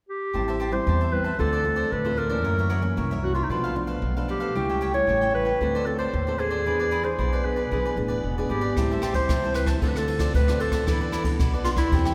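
A warm, punchy clarinet carries the melody up front in a classical style, sounding distant and roomy as it sings over a yearning, bittersweet samba and choro groove in A minor at 114 BPM. Beneath it, a crisp, bright cavaquinho is picked alongside a thumb-plucked nylon-string guitar whose classical tone carries audible finger squeak. A woody, thumpy upright bass on gut strings anchors the low end with pizzicato notes, while the harmony moves through chords such as Am7, F#7, Bm7b5 and E7 before settling on E7sus4. At 8.8 seconds a jazz brush drum kit enters up front, adding dark cymbals, a boomy kick and rim clicks with an airy, polished small-room character. A wet church reverb with a 3.0-second tail bathes the ensemble, and the passage is cut from a longer piece.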